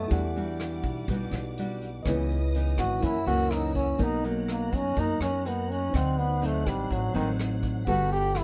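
Bossa nova, romantic and breezy, in which a bright, forceful trombone solos up front with jazz vibrato over fingerpicked classical nylon-string guitar, a mellow tine electric piano set in the background, lush bowed strings holding soft-attack chords, woody pizzicato upright bass, and a vintage brush kit with a punchy kick in a small, pumping room, all in a dry mix.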